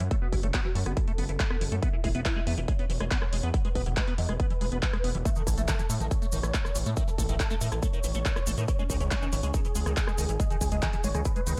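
A huge, detuned supersaw lead carries the euphoric melody through phaser, low-pass filter, digital delay and sidechain pumping in this uplifting 140 BPM trance excerpt in E major, over squelchy acid-bass arpeggios with chorus and 12-bit sampler grit, an aggressive tube-saturated synth bass, a punchy up-front electronic kick, a layered dance kit of handclaps, hi-hat and rim click in a small room, and grainy, close maracas that join at 5.3 s.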